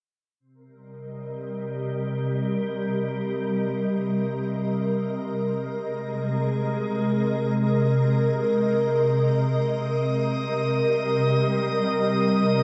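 Heard through a huge, wet reverb and the warbling pitch drift of worn cassette tape, this spacious, reflective ambient fragment in C minor drifts in free time as a soft, organ-like pad, pure and full-bodied with a moving notch and ensemble chorus, holds sustained chords from Cm7 through Abadd9/C and back from 0.9 seconds, joined at 9.9 seconds by a faint, glassy texture of drifting sine overtones high on Eb6.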